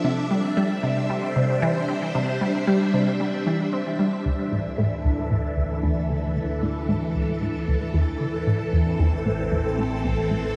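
A juicy, squelchy blip pluck sits up front in this mysterious, expansive stretch of ambient, sequencer-driven space music, repeating its resonant riff through a phaser, subtle chorus and delay. Alongside it, a vintage string machine, also up front, holds bright, swirling sustained chords, its ensemble chorus and phaser giving the harmony a shimmering body as it moves from Cadd9 to Dsus2 and then to Am. From 4.3 seconds a filter sweep moves across the arpeggiated synth sound, and at 4.8 seconds an evolving analog drone enters low in the bass, its chorused, wave-folded tone blooming gently with a slow attack. A very quiet granular texture follows at 5.2 seconds, adding twinkling, sparkling FM glints with an octave-up shimmer high above. The whole piece floats in a vast, echoing cathedral reverb, with long tails that make this fragment of a longer work feel suspended and open-ended.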